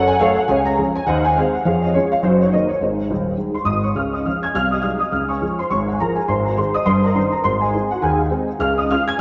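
A dark, mellow grand piano carries this brief stride jazz solo, sitting up front with its vintage action noise audible as it swings exuberantly across a range from Eb1 to Ab6. Ensemble chorus and delay color the piano, and a long plate reverb soaks the mix in a dreamy haze. The 9.2-second passage is cut from a longer piece, moving through two sections that split at 4.0 seconds.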